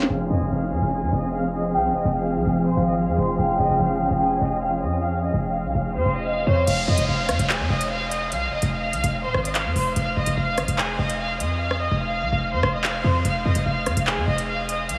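A lush, vibrato-rich violin section carries the melody over a velvety chorused synth lead, bowed symphonic string chords and a heavy, punchy 808 bass in this menacing, cold half-time drill piece at 146 BPM in F minor, with a filter sweep shaping the opening until the synth and strings fall away and a produced kit of crisp hi-hats, sharp snare, rim clicks, handclaps and crash returns at 6.7 seconds beside a background downlifter, the hats briefly muted from 11.6 seconds, the whole mix soaked in dreamy reverb and vinyl crackle.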